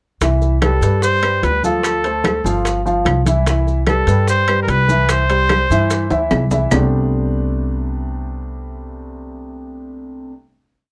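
Afro-Cuban jazz with a danceable, sophisticated mood, opening on a dark, woody upright piano playing an octave montuno and a thumpy gut-string upright bass in a tumbao that anticipates the chords, both up front, together with ringing metal-shell timbales, high-tuned bongos, medium-tuned congas with slaps and open strokes, and grainy maracas. A warm, vibrato-laden trumpet carries a free, scooped solo melody from 0.6 seconds, joined by woody claves on a two-bar time line, while the percussion drives the groove, stopping at 6.8 seconds after a drum fill. Piano and bass then hold a long Csus2 final chord to 10.3 seconds, captured with close, detailed microphones and light reverb.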